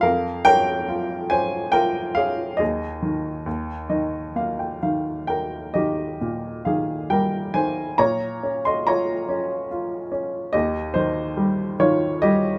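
An upright piano, clear and woody with a slightly detuned character and a short sustain, sits up front in this peaceful, warm classical passage cut from a longer piece. Playing solo for the full 12.6 seconds, it moves in a lyrical 3/4 at about 69 BPM, with uneven beats and a rubato feel that lets the phrasing breathe. The part spans from Eb2 up to C6, tuned slightly below standard pitch at A4 = 439 Hz. The harmony moves from Bbm/F through Ab5/Eb to Eb, then returns to Bbm before settling on Eb again at 10.5 seconds. A brief piano fill from 3.5 to 5.3 seconds adds a small flourish. Light reverb gives the present sound a gentle sense of space.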